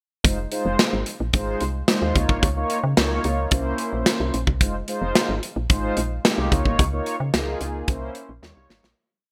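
A mellow synth brass, woody FM bass and modern studio drum kit enter together at 0.2 seconds in a slick, funky early-eighties boogie funk piece in F minor at 110 BPM, the drums sitting up front with a tight kick, medium-tuned snare and hi-hat under gated reverb. The round, fat bass line is syncopated and soft, while the dark, brassy synth, colored with chorus and vibrato, plays syncopated drop2 chord stabs with grace notes over Fm7, Db69 and C7b9 changes. The bright digital production fades out from 6.8 seconds, and a drum fill over an Eb9 chord closes the piece at 9.0 seconds.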